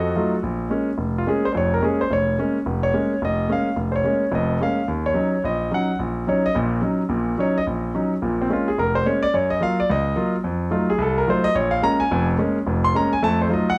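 Swinging eighth notes at a brisk 216 beats per minute in 4/4 drive this short jazz passage in B-flat minor, cut from a longer piece. A concert grand piano plays entirely alone across the roughly 13.8 seconds, reaching from deep bass notes up into the high treble. The harmony moves from Bbm7 to Ebm7 at 4.9 seconds, then back through Bbm7, Gbmaj7 and an F7b9 before returning home and closing on another F7b9. The piano sits up front with a clear, intimate tone and long sustain, and the audible sound of its action adds to the close, polished feel. A moderate large-studio reverb and a dark production give the whole piece a late-night mood.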